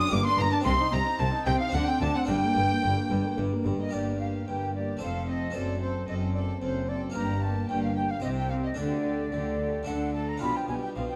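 A mellow, airy flute and rich, gut-string period violins carry the melody from the start of this dramatic, driving baroque-style concerto movement in G minor at 111 BPM in 3/4, over a second violin line in the background, dark viola and a full, plucked Flemish-style harpsichord, with distant cellos and a warm bowed double bass section entering at 0.1 seconds on the bass, all set in a moderate recital hall reverb in this passage cut from a longer piece.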